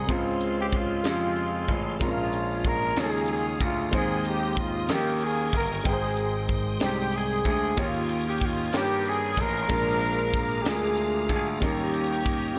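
Slow, hopeful and reverent gospel at 62 BPM in a straight 6/8, where a growling, raspy trumpet carries the melody over a tight vintage horn section set back in the mix, both with slapback echo like the intimate grand piano whose action noise is audible, while a reedy tonewheel organ with key click and fast rotary shimmer holds sustained chords above an overdriven, punchy slap bass and a polished fusion drum kit with a high-tuned snare and tight kick, all within a lush hall reverb that gives the passage, moving from Dbmaj7 through Abmaj7 to Eb7, a big arena sound.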